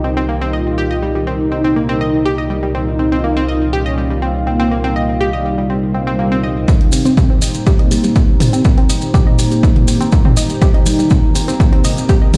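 Dark and hypnotic, this melodic techno piece in C minor moves at 122 BPM in a straight 4/4, cut from a longer track. A mellow synth brass carries the melody with a brassy, round tone and dub echo, while a lush unison pad holds thick, vintage chords in the background and an analog pluck spins bright, wave-folded arpeggios through delay. A warbly, lo-fi tape-like pad adds nostalgic texture with built-in reverb, and these four parts, like the fat, detuned analog bass up front, breathe with sidechain pumping over an Eb/C chord. The bass drops out at 6.7 seconds, just after an electronic swell, as the harmony shifts to Cm7 and a build-up begins with filter sweeps on the arpeggio and polysynth. There a punchy electronic kick arrives up front, joined by hi-hats and toms from an analog drum machine in the background and grainy maracas. The whole mix carries light reverb and the sound of a big system playing in a bare stone room.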